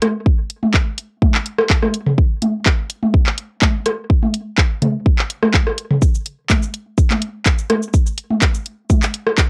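Techno at 125 BPM in a straight 4/4, hypnotic and quirky, built from a house drum kit of handclaps, shaker and warm hi-hats, a minimal click kit of rim clicks and toms given overdrive and re-recorded in a small room, and a punchy, layered electronic kick arriving at 0.3 seconds, all up front with light reverb and the character of a home cassette recording cut from a longer piece.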